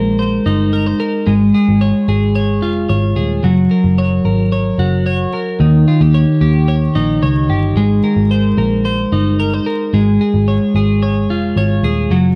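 Nostalgic and bright, this short cut from a longer piece is jangly indie pop in a straight 4/4 feel, tuned a little below standard pitch. A twelve-string electric guitar sits up front, playing clean, picked arpeggios with a compressed, chiming sparkle across its middle range. Beneath it, a vintage muted picked electric bass gives a dark, round, punchy foundation, its foam-muted tone amped and thumping low. Both parts play together from the start through about 12 seconds, moving through a cycle of Abadd9, Db/Ab, Gb and Eb7 before returning to Abadd9 and Db/Ab. The sound carries a moderate studio reverb and the hazy character of a home cassette recording, with vinyl crackle adding to its aged feel.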